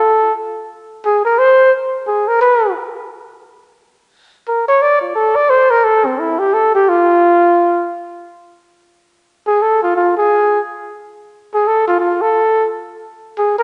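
A hall-like room gives this short cut from a longer jazz piece a moderate reverb tail of 1.8 seconds, and the top end is rolled off above 10.5 kHz. A solo trumpet, up front and tuned to A4 = 439 Hz, plays in free time in F major across 13.6 seconds, ranging from C4 to D5 with a dark, breathy tone, scooped notes and a smooth upper register. The mood is sophisticated and swinging, and the phrase starts over at 8.9 seconds with a restatement of the opening idea.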